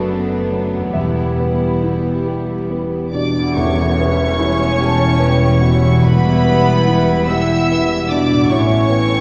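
Bittersweet and longing, this slow, rubato cinematic orchestral cue in 6/8 and E dorian sets a rich, floating sul tasto violin melody over darker, woody violins, a background piano with audible action noise, very quiet violas, distant horn chords, ringing harp arpeggios, and cello and double bass sections, with a brief clarinet line ending at 2.2 seconds before a mellow flute ensemble and a very quiet tam-tam enter at 3.6 seconds, all heard from further back in a wet concert hall.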